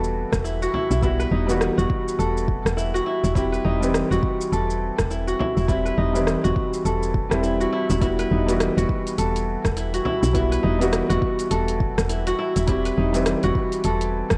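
Mystical and earthy, this organic downtempo excerpt at 103 BPM, swung on the 16ths in E harmonic minor, sets crisp, ringing fingerpicked kora arpeggios and a mellow felt-muted upright piano, both up front and trailed by digital delay, with the piano's chords of Emadd9 and C/E pumping under sidechain compression, over a round, woody FM bass with transformer saturation, an overdriven deep house kit of hi-hat, rim click and shaker, a deep electronic kick entering at 0.3 s, and a large, dry frame drum struck with hard hands briefly at 0.7 s and again from 5.4 to 10.2 s, all in light reverb with the worn, warbling pitch drift of old cassette tape.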